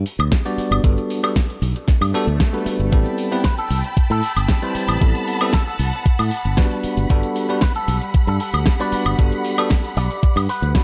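Nu-disco excerpt at 115 BPM in G major, groovy and sunny, built on a growly, punchy fingered electric bass with tube saturation and a thumpy electronic kick up front, while an overdriven pop kit of fat snare, metallic hats, shaker and woodblock rides beside them. A bell-like tine electric piano with sidechain pumping and digital delay carries the Gmaj7 to Am9 harmony, and after a background swell at 2.1 seconds a lush, bowed string section enters at 2.9 seconds with vintage 12-bit grit and pumping of its own. From 3.4 seconds a dark, compressed envelope-filtered electric guitar with subtle chorus and delay takes the melody, all set in a light digital ambience.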